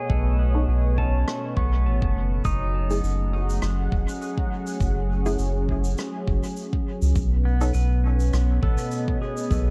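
A round, up-front sub bass anchors this hazy, deep ambient dub excerpt beneath a smooth, detuned sawtooth pad with chorus, a clean, twangy pedal steel guitar whose fingerpicked arpeggios with tape echo fall silent at 3.6 seconds and return at 7.5 seconds, muted filtered chord stabs in the background with lush chorus and dub echo, a layered electronic kick, and a brushed rim click and shaker with dub echo, all in a dark small-room ambience.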